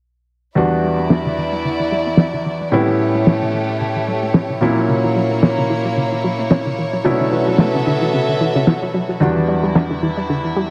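Cosmic and groovy, this nu-disco excerpt rides a swung 16th-note feel in 4/4, with a fat, dry snare and airy shaker sitting up front under a low-pass filter. A clear grand piano with audible action noise carries the accompaniment through tape echo and its own low-pass filter, while a dark studio violin section holds soft-attack sustained chords with light vibrato and a smooth top. A round, nasal analog pluck spins chorused, tape-echoed arpeggios under a filter sweep, moving through Em7, A7, F#7/A#, Bm11 and back to Em7 in a light studio reverb.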